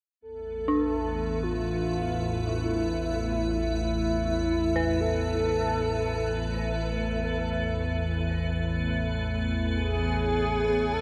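An up-front, organ-like drone anchors this desolate, dark ambient drone excerpt, holding a calm low foundation from 0.4 s with slow attacks, a long release, ensemble chorus and its own reverb, its sine and triangle tones shaded by ring modulation and a moving notch. Above it, a horn-like synth lead carries the melody from 0.2 s, its round, vintage sawtooth tone warbling with vibrato, chorus and a diffuse ambient delay. An icy glass pad adds a crystalline, airy layer with a noise component, detuned and bright, with slow attacks, chorus and reverb. Further back, an eerie synth bell plays inharmonic FM arpeggios whose fast attacks decay away, colored by chorus, tremolo and diffuse delay. The music rests on a single suspended chord and sits in a vast, echoing space, soaked in huge, long-tailed reverb.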